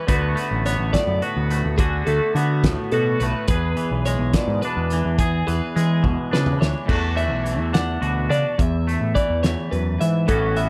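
A twangy, clean, scooped electric guitar with analog chorus and a bright, compressed twelve-string picking arpeggios open this wistful, playful math rock and midwest emo excerpt. They are joined almost at once by an up-front, overdriven picked bass and a loose acoustic drum kit with a fat snare, punchy kick and dark cymbals in a pumping studio room. At 71 BPM in a straight 6/8, the chords move from D6 to E7 at 3.5 seconds, and a drum fill at 6.0 seconds leads into a new section on E9sus4 at 6.9 seconds, all heard dry and close.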